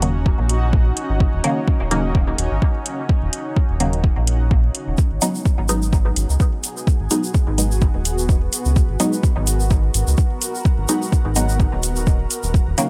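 A dub techno groove at 127 BPM in 4/4 with a light 16th-note swing, set in G# minor and cut from a longer piece, with a hazy, cavernous mood. Metallic, overdriven hi-hats that sound re-recorded in a large room run from the start, an overdriven electronic kick sits deep and up front from 0.3 seconds, and a grainy, close and dry tube shaker enters at 5.0 seconds. Underneath, a round, dark analog bass with a detuned blend of sawtooth, sine and triangle waves holds the low end with sidechain pumping. Muted, filter-plucked dub chord stabs with short decay pass through chorus, phaser and dub echo, while a cloudy, evolving granular pad with slow attack and long release breathes alongside them with its own reverb and pumping. The harmony moves from D#m7 to G#m7 at 5.0 seconds, all wrapped in a cavernous digital ambience.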